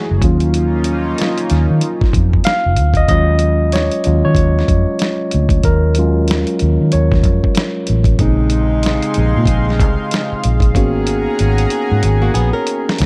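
Dark, warm and nearly dry, this short late-night neo-soul and R&B passage in Eb minor moves at 94 BPM with a lazy sixteenth-note swing. A barky, lightly overdriven tine electric piano carries the solo from the start over a round, foam-muted electric bass and a gritty, compressed sampler-style kit with a thumpy kick. A shimmering, detuned pulse-width pad returns at 8.2 seconds alongside distant, punchy saxophone stabs, a drum fill arrives at 10.7 seconds, and a fingerpicked flamenco guitar slips in at 12.2 seconds as the chords move from Ebm9 through Bbm11 to Abm11.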